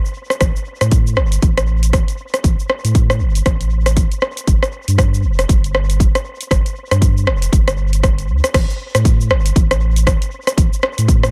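A punchy electronic kick drum sits up front and drives this afro house excerpt at 118 BPM in 4/4, its layered, produced tone carrying the character of a small room. Beneath it, a deep, warm, round sine sub bass with a fast attack and sustained notes sits between F1 and A2, thickened by tube saturation and pumping through sidechain compression. A house drum kit with the same up-front, small-room quality fills in the groove with crash cymbal, hi-hat, rim click and shaker, swung at 59% on the sixteenths. The mix is dry on reverb yet heavy with echo, giving the driving, spiritual mood a close and immediate feel. After the opening section, the track reaches a drop at 8.5 seconds that runs to the end of the cut.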